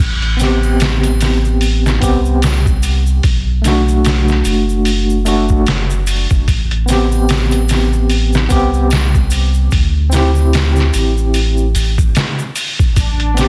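This dense, heavily limited trip hop excerpt sits in light reverb with a layer of vinyl crackle, its cinematic, melancholic mood unfolding at 74 BPM in A dorian with a swung 16th-note feel. A deep, round dub sub bass opens alone at the very start and stays up front, soft and sustained. A compressed, pitched-down sampler-style drum kit joins at 0.2 seconds, with a thumpy kick, medium-tuned snare and hi-hat sitting gritty and forward in studio reverb. From 0.4 seconds a barky, overdriven tine electric piano played through a combo amp carries the chords up front, shaded by tremolo, a low-pass filter and tape echo, while a tube shaker, triangle and group handclap sit small and acoustic in the background. The harmony moves from Am7 to Bm7, back to Am7, then to D7sus4, and at 13.0 seconds a dark, veiled con sordino string section enters on a bowed held chord with light vibrato and vintage 12-bit sampler grit.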